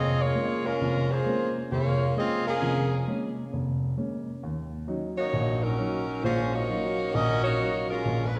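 Brassy and sultry, this swung jazz fragment moves at 132 BPM in 4/4, with a 65% swing on the eighth notes. A tight saxophone section carries the melody across a range of Gb3 to F5 throughout the 8.4 seconds, its jazz-style vibrato sitting present and up front. Beneath it, a warm baby grand piano supplies accompaniment from F1 to Eb4, its natural tone and short sustain also placed close to the listener. The harmony rests on Bbm7 before shifting to Ebm7 at 4.4 seconds. A wet scoring-stage reverb with a 1.9-second decay sets the whole performance further back in the room, lending the cut from a longer piece a spacious glow.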